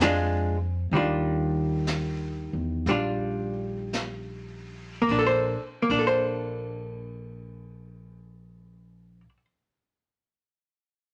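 A moderate studio reverb surrounds this intimate, tender jazz ballad fragment in Bb major, swung gently in 4/4 at 49-67 BPM and slowing down through its first 5.1 seconds. Up front, a clean, compressed hollow-body archtop guitar picks dark accompanying chords, moving from a rootless Bb7 to Ebmaj9 and then Bbmaj9. Alongside it, a woody, growly pizzicato upright bass plays until 9.2 seconds, while a distant, roomy brush kit with a high-tuned snare, boomy kick and ride cymbal brushes softly underneath before dropping out at 6.1 seconds.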